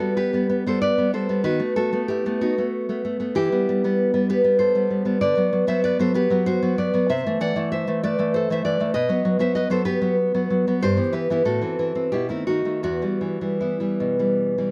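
A nylon-string guitar carries this romantic piece for solo classical guitar alone, fingerpicked up front with a dark, full-bodied tone and the occasional finger squeak audible through close, detailed microphones. The mood is passionate and wistful, moving in a rubato triple metre that lets the phrasing breathe and stretch. The harmony stays rooted in a minor home, opening on a rootless chord and drifting through dominant and subdominant colours before a tense run of chords near 11.5 seconds resolves back home at 12.8 seconds. The guitar's range spans from deep bass notes to singing upper lines, giving the solo a deep classical weight. Light reverb adds a touch of space, and the recording is cut from a longer piece, lasting just under 15 seconds.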